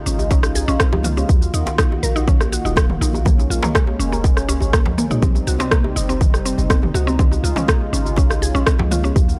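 Afro house with a hypnotic, driving pull: a punchy, up-front electronic kick anchors a layered house kit of rim click, shaker and toms, while a cracking djembe sits in the background and high-tuned, ringing congas enter softly at 0.9 seconds. A deep, boomy 808-style sine bass and a woody, round mallet-like synth pluck, its arpeggios trailed by analog delay, both pump against the kick. A smooth, detuned sawtooth pad with chorus sustains chords moving from Db through Ebmadd9, Bbm7 and Cdim, all within a dry, gritty mix.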